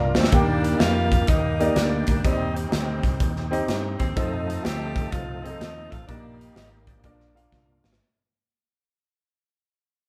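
Uptempo gospel with a swung 4/4 feel and an uplifting, reverent mood, cut from a longer piece and fading out after a brief opening drum fill, with another fill closing it at 7.5 seconds. An edgy, close-miked saxophone section carries the melody over a natural-toned grand piano, a round, amped fingered electric bass and a punchy, up-front studio drum kit of hi-hat, kick and snare. A thick, gritty tonewheel organ holds sustained chords in the background through a fast rotary speaker and chorus vibrato, all set in a moderate stone-room reverb as a band playing live together.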